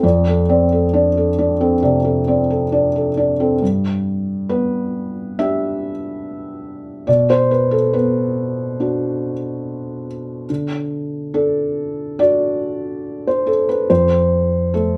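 A moderate studio reverb with a 0.7-second decay surrounds a single felt-muted upright piano, captured live in one room and placed up front, its soft, dark tone carrying audible action noise and a vintage character. This neoclassical minimalist piece moves at 70 BPM in a rubato 4/4, set in G major and tuned to A4 = 438 Hz, with the solo piano ranging from F2 to E5 across the full 15 seconds. Cut from a longer work, it opens on F6 before a new section begins at 3.6 s and moves through G, Bm, D and F, creating an intimate, hopeful mood.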